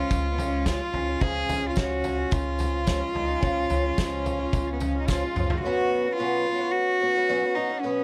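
A dry excerpt of uplifting indie folk at 109 BPM in 4/4, built over a C# chord, with an intimate bowed cello carrying the melody up front in an airy, sul tasto tone with light vibrato. A nasal, smooth fiddle with slapback echo plays a second line, while a shimmering, octave-doubled twelve-string acoustic guitar picks the accompaniment with subtle chorus. Woody pizzicato upright bass, a distant, roomy drum kit with a fat snare and tight kick, and a jingly tambourine in the background drive things until a drum fill at 5.1 seconds; at 5.6 seconds the harmony moves to Bsus2 as a soft, flute-like tonewheel organ enters with slow rotary speaker alongside the cello and guitar.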